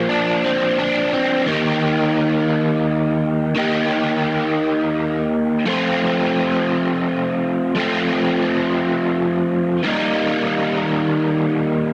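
This short cut from a longer rock piece opens on a lone overdriven electric guitar, picked and double-tracked, sitting up front with a warm, gritty tone colored by a rotary speaker effect. The mood is trippy and hazy, moving in a slow 6/8 at 57 BPM counted in dotted quarters with a straight feel. The guitar ranges from Bb2 up to G4, starting on a Bbadd9 chord before shifting to Eb at 1.5 seconds. From there the harmony moves to F at 5.7 seconds and back to Eb at 9.9 seconds, carrying the passage through to its end at 11.9 seconds. A light reverb gives the solo part a touch of space around its warm, double-tracked sound.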